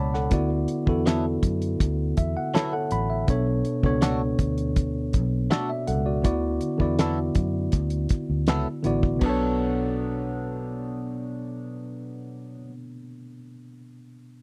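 Lush 1970s-style soul in B minor at 81 BPM, silky and cinematic, where a worn, slightly out-of-tune tine electric piano with light overdrive carries the chords from D69 to Bm7 and adds a fill at 1.8 seconds, over a round, foam-muted fingered bass and a damped drum kit with a fat snare and tight kick that drops out at 9.4 seconds, while a twangy, direct-recorded clean guitar with subtle chorus plays a bright riff, all captured in a dry, close studio sound in this short excerpt.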